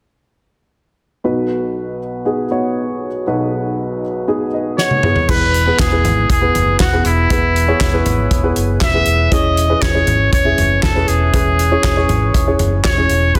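Dense and heavily limited with light studio reverb, this uplifting, anthemic piano-driven pop excerpt in E major at 119 BPM opens on a dark, woody upright piano with audible action noise, joined at 4.8 seconds by a bright, punchy solo trumpet melody with scooped notes and a natural, small-room country drum kit with a fat snare, handclaps and a quick fill, before a round, foam-muted vintage electric bass enters at 5.3 seconds.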